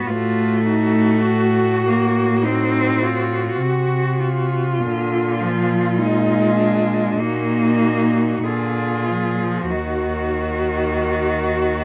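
Yearning and melancholic, this fragment of a lyrical classical piece for cello ensemble unfolds slowly in Eb minor at 46-51 BPM in 4/4, with a rubato feel and light reverb. Four bowed cellos with vibrato play throughout: a clear, smooth, distant cello carries the melody in the background, and a rich cello shapes the second line with soft attacks and expressive portamento. An intense cello plays the accompaniment up front, and a close, even cello anchors the bass as the harmony passes through Adim7, Bb5, Ebm/Bb and Bb7 before settling on Eb minor at 9.7 seconds.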